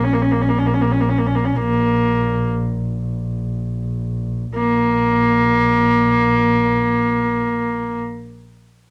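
Solemn and vast, this short excerpt from a longer piece of Mongolian folk music unfolds in free time in a Bb yu mode, with the tuning set slightly high at A4 = 444 Hz. A single bowed horsehead fiddle carries the melody from Bb3 to Db4, its horsehair strings giving a bright, biting, earthy and husky voice with a distant quality, light vibrato and sliding portamento. Beneath it, one bowed double bass holds a low Bb1 drone, its tone nasal and boxy yet expressive, with its own vibrato and portamento. Both instruments sound for the full 8 seconds, the fiddle sitting louder and up front while the bass stays lower in the mix. The pace slows over the first 4.6 seconds before a second passage begins. A home cassette recording lends its grain, set in a short, wet studio reverb.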